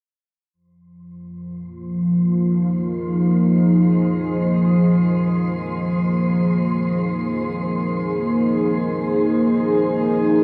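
Ambient, sequencer-driven space music with a hypnotic, cosmic mood: this excerpt opens at 0.5 s on an up-front, full-bodied sawtooth-and-sine pad with a sub octave and chorus, holding slow-attack sustained chords that evolve under a filter sweep, while from 2.3 s a quieter, breathy wind-like tuned noise texture fades in with its own reverb and long release, all bathed in a wet, lingering shimmer reverb.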